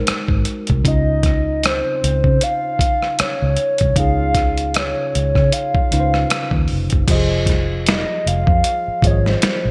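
A hollow, woody clarinet-like synth lead with chorus, delay and vibrato carries the melody up front over a worn, slightly out-of-tune tine electric piano with light overdrive, joined at 0.1 seconds by a round, foam-muted fingered electric bass and a gritty, compressed sampler-style soul drum kit with thumpy kick, rim clicks and gated reverb, giving this relaxed, warm neo-soul R&B fragment a bright 1980s-style digital sheen before it moves into a new section at 7.1 seconds.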